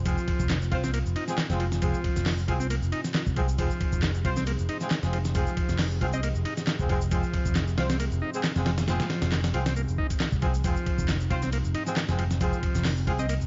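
Breakbeat at 136 BPM with a swung sixteenth feel, raw and funky, sitting on F minor throughout this section of a longer piece. A gritty sampler-style drum kit with a thumpy kick, captured in a large room, drives up front alongside a growly, punchy picked electric bass with tube saturation, while overdriven electronic shaker and handclaps, a buzzy combo organ riff with delay and tight, mellow horn stabs with octave doubling fill the middle. A dark, warbling lo-fi pad pumps quietly in the background, a crystalline wavetable pluck flickers in only at 6.1 and 13.2 seconds, and vinyl crackle with a dull, muffled top end gives the whole track a dusty, aged sound.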